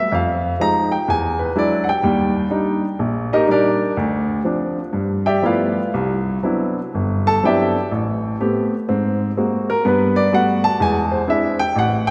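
Solo jazz at 124 BPM in 4/4, swung with a rubato looseness, this sophisticated 12-second fragment from a longer piece features a lone baby grand piano, natural and up front with short sustain, ranging from G1 to Bb5 through rich harmony such as Fm7, Cmaj9#11 and Eaug7, bathed in a lush concert hall reverb.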